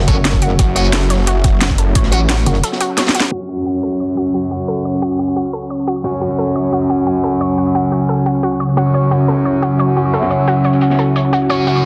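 A dense, heavily limited mix sits in a lush hall reverb, with a rolled-off top end giving this dark, mechanical fragment of technical drum and bass its shadowy sheen. It opens with an aggressive, metallic wobble bass up front, soon joined by a thick, detuned saw bass, driven by an overdriven, knocking electronic kick and a drum kit with a cracking snare and bright hats, all in a straight four-four. A gritty, high-tuned breakbeat kit sits in the background beneath them. The kick and basses drop out shortly before a drum fill, and then both kits fall away at 3.3 s, when an evolving, full-bodied resonant pad takes up sustained chords under a long filter sweep. Throughout, a round, nasal analog pluck spins arpeggios through tape echo, a picked, overdriven electric guitar fires stabs that are also swept by the filter, and a deep, warbling ambient pad with a slow attack pumps quietly beneath. 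The breakbeat kit returns at 8.8 s, and a barely audible riser creeps in at 11.5 s just before the cut.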